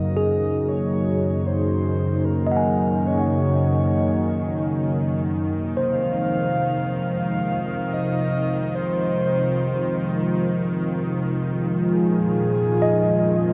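A vast, echoing space wraps this melancholic, reflective ambient excerpt at 75 BPM in Eb dorian, its huge reverb letting each tone hang long after it sounds. Up front sits a warm analog pad of detuned sawtooth and triangle tones with a sub octave, holding smooth, mellow chords with chorus and a filter sweep across its 13.5 seconds, moving from Ebm7/Gb to Fm7 at 5.5 seconds and Bbm7 at 11.9 seconds. Beneath it, a string-like bowed drone on Eb3 fades in from 0.1 seconds, its nasal, tense, bright edge carrying vibrato and a noise layer. A breathy, flute-like synth lead with a soft attack and vibrato fades in to trace a gentle melody between Ab4 and F5, touched by subtle chorus and tape echo. A clean tine electric piano, heard as if through built-in speakers, spins arpeggios from Ab4 to Ab5 with its own tape echo.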